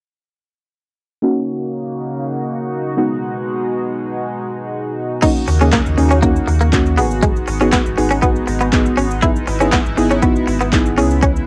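This energetic, driving dance-pop excerpt in a straight 4/4 at 120 BPM opens at 1.2 seconds with a dark, mellow chord stab and a shimmering, retro pulse-width pad, both pumping against the sidechain, the stab moving through a filter sweep, with a cassette-tape haze. At 5.2 seconds a punchy, up-front deep house kit arrives with kick, snare, handclaps, hi-hat, shaker and crash, joined by a bright, twangy clean electric guitar riff drenched in lush chorus. A deep, full sub bass with an octave layer pumps beneath it all from 5.5 seconds, in a small, moderate booth ambience.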